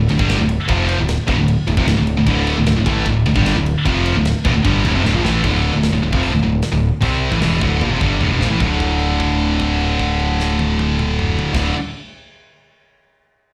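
Heard through a club PA with little reverb, this heavy, relentless heavy metal excerpt in D minor charges along at 151 BPM, with an up-front, bright high-gain guitar riff carrying slapback echo, a scooped high-gain guitar riffing in the background, a very quiet double-tracked distorted guitar that drops out at 5.4 seconds, a growling, overdriven picked bass up front, and a tight metal drum kit in a big room whose fills lead to a held D5 power chord from 8.6 seconds.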